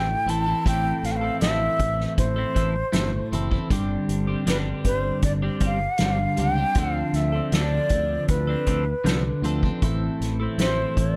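Mysterious and trippy, this short psychedelic rock excerpt moves at a relaxed 78 BPM in A minor, its straight 4/4 pulse drifting through Am, Gsus4, Dm7 and back to Am. A breathy, mellow jazz flute carries the melody up front, close-miked with a crisp, chiffy attack and expressive vibrato, its line trailed by tape echo. Alongside it, a clean, compressed twelve-string electric guitar picks out a riff, its warm tone swirling through a phaser. A fingered electric bass adds a dark, round foundation, while a soft-mallet drum kit joins at 0.3 seconds with a fat snare, punchy kick and hi-hat, sounding distant and roomy in the studio space. Light studio reverb softens the blend, giving the whole a hazy, dreamlike glow.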